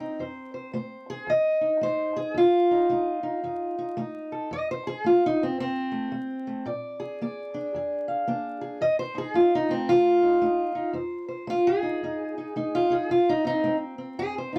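A fingerpicked steel-string acoustic guitar carries this short cut from a longer piece, playing entirely alone from start to finish in a gritty, swaggering acoustic country blues. Its parlour-sized tone is dark and boxy, sitting up front in the mix and ranging from its low bass strings up into the high register. The feel is a loping swing in four, with the harmony resting on F7 before moving to Bb7 at 6.7 seconds and settling back on F7 at 8.8 seconds. A moderate booth ambience gives the guitar a close, dry setting, while a layer of vinyl crackle lends the recording an aged, dusty character.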